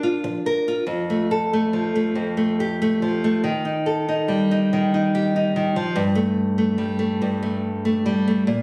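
Captured on a phone in the room with light reverb, this brief excerpt of gentle folk features a solo fingerpicked nylon-string guitar, bright with fresh strings and small but up front, moving rubato in 6/8 at about 48 BPM in F mixolydian through Bb, F, Eb and Gsus2 chords over its 8.6 seconds.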